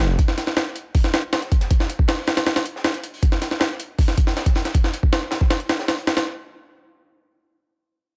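A straight 158 BPM 4/4 drum and bass and jungle groove, dark and raw, is driven up front by an overdriven, compressed, pitched-up sampler-style kit with a thumpy kick and high-tuned snare under studio reverb, layered over a very quiet, saturated acoustic breakbeat kit of warm, dark, rolled-off hi-hat and snare, both playing until 6.3 seconds in this short cut from a longer piece, with the dry overall sound giving the drums a gritty, close feel.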